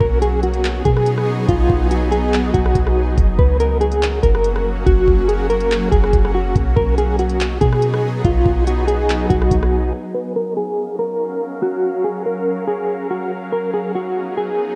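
Atmospheric cloud-rap hip hop at 142 BPM in a half-time 4/4 feel, floating and dreamy in F# major, where a dark, clean fingered electric guitar melody with tremolo, low-pass filter and tape echo sits up front over a shimmering, ethereal ambient pad of sustained chords with chorus, sidechain pumping and granular sparkle, while a deep, boomy 808-style bass and a smooth electronic drum kit with knocking kick, handclaps, hi-hat and rim click carry the groove until they drop out near 9.9 seconds, leaving guitar and pad under a filter sweep across F#maj7 and B6 chords in this rough home demo mix with light digital ambience.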